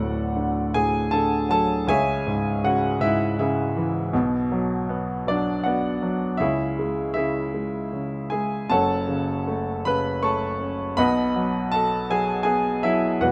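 A clear grand piano plays alone from the first moment in this calm, peaceful classical excerpt, a lyrical solo in 3/4 at 80 BPM with a free rubato feel, its long sustain ringing through light reverb as close, detailed microphones keep it present and up front while the harmony moves from D through C#m, Bm, C#m and F#m to B7 across 13.3 seconds.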